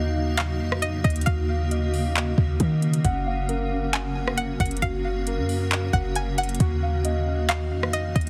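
A deep, boomy 808-style bass sits up front in this floating, blissful cloud-rap excerpt, its fast attack and dark decay anchoring a half-time feel at 135 BPM. A granular cloud pad holds sustained chords throughout, cloudy and blurred with its own reverb, moving from D#madd9 to F#maj7 at 3.0 seconds and back at 6.6 seconds. Muted, felt-like synth keys run soft arpeggios above it, intimate and warbling with chorus and tape echo. At 0.4 seconds a twangy, string-like resonator pluck enters with a bright melody, treated with chorus, phaser and tape echo, alongside a smooth R&B drum kit of soft kick, metallic hi-hats, handclaps and rim clicks placed up front. The whole mix carries a digital ambience and a heavily compressed, radio-like sheen.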